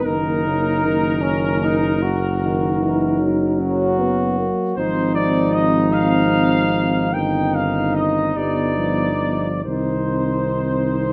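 A mellow trumpet section with light vibrato carries the melody from the first moment, over a distant flugelhorn second line, a background euphonium and a smooth-topped trombone, while a dark, punchy tuba anchors the bass up front from 0.1 s. This elegiac, solemn, hymn-like classical piece for brass band moves in a rubato 12/8 at 45-52 BPM, settling into C minor from 4.8 s and reaching a C minor chord at 9.6 s. Close, detailed microphones capture the players in a moderate recital hall reverb, in a passage cut from a longer piece.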